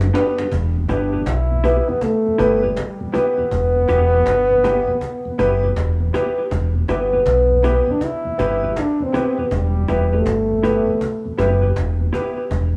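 A mellow, punchy trombone carries the melody up front with light vibrato in this serious, hypnotic roots reggae excerpt in E minor at 80 BPM, its 16ths swung, opening on a short drum fill from the snappy, saturated cajon before the harmony settles from G onto E minor at 0.5 seconds. A deep, round fingered electric bass sits prominently beneath, while a woody upright piano adds short stabs, a dark, clean electric guitar with vibrato stays in the background, and a very quiet, lightly overdriven tonewheel organ turns through a rotary speaker. The whole track has the rough feel of a home cassette demo in a small room, bathed in a wet plate reverb.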